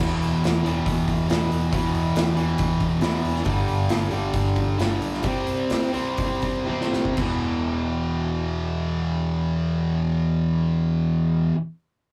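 Hard rock with a driving, aggressive edge, this rough rehearsal-room excerpt pairs a bright high-gain distorted guitar and an up-front, warm hollow-body overdriven guitar, each playing a riff, over a growly, punchy picked bass and a big acoustic kit with bright cymbals, slowing from 3.5 seconds into a drum fill before the drums drop out at 7.3 seconds, leaving guitars and bass to carry the second section in a tight, wet booth ambience.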